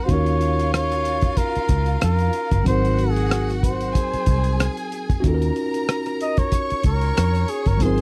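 A warm flugelhorn carries the melody up front with vibrato, a soft attack and scooped, jazz-style notes, while a rich bowed violin section adds an expressive second line in this silky, smooth 1970s-style soul excerpt in Eb dorian at 93 BPM with a light sixteenth-note swing. A worn, slightly out-of-tune electric piano with gentle overdrive comps through Ebm9 and Ab9, and from 0.1 seconds a dark, round, foam-muted fingered bass and a muffled, gritty cloth-damped drum kit with a tight kick, hi-hat and rim click sit close in the mix. The whole take sounds dry and intimate, like a close studio recording of the era.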